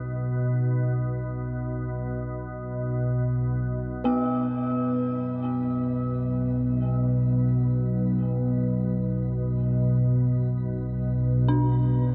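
Dark ambient drone in free time, tuned to A4 = 444 Hz, this ominous, cavernous passage from a longer piece rests on an up-front, detuned organ-like drone, which carries a filter sweep for its first 4.1 seconds. Eerie, inharmonic FM synth bell arpeggios with chorus, diffuse delay and shimmer reverb float over it, alongside a bright, metallic bronze singing bowl whose ringing tone shows slow beating. The harmony moves from Bm7b5 to B5 at 4.1 seconds, and at 6.3 seconds a deep, mellow sawtooth pad enters in the background with sustained chords, all inside a huge, moderate reverb.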